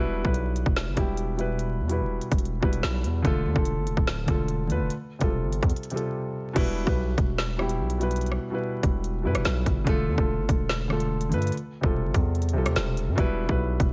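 A dark, ominous drill track in half-time at 145 BPM, set in E phrygian and cut from a longer piece. A mellow grand piano carries the accompaniment from the start, intimate and vintage in tone, with audible action noise and a short sustain, moving through Em, Dm and Fadd9/E. A distorted 808-style bass sits up front alongside it, heavy and aggressive, its sine core layered with noise, saturated, with a fast attack and a decaying tail. The electronic drill kit enters at 0.2 seconds with a hard-clipped kick, woody snare, crisp hats, rim clicks and crash cymbal, all tape-warm and close. A break at 5.7 seconds leads into a second section at 6.6 seconds that returns to Em, and the dry mix is dusted with vinyl crackle and rolled off in the highs.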